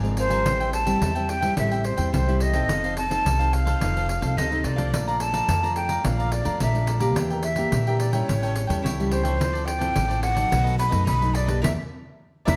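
Festive and lively, this short samba and choro passage in straight 4/4 is cut from a longer piece. A breathy jazz flute carries the melody from 0.2 seconds, its soft attack, vibrato and lifted highs giving the line an expressive, airy voice. Beneath it, a bright, crisp picked cavaquinho and a fingerpicked classical nylon-string guitar with fresh strings fill in the accompaniment, while a woody pizzicato upright bass sits up front. A close, dry pandeiro adds a jingly pulse played with hard hands. The harmony moves through chords such as Am7, Bbmaj7 and A7, and the whole band hits an accent at 11.6 seconds on a Dsus2/E chord, all set in a moderate large studio reverb.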